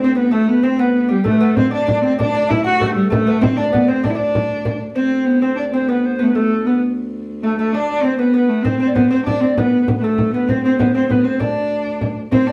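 A clear, intense bowed cello carries the melody up front with vibrato in this rustic, ancient-sounding medieval dance in 6/8 at 130 BPM (counted in dotted quarters), tuned to A4 = 439 Hz. A breathy, reedy tenor recorder with a soft attack and a delicate, fingerpicked gut-string lute add second lines, while a fretted viola da gamba holds a ringing drone on D2 in the background. A small, bright frame drum played with soft hands comes in at 1.3 s, drops out before the second section begins at 5.0 s, and returns at 8.7 s, all within a moderate stone-room reverb that suggests a band playing live in one space.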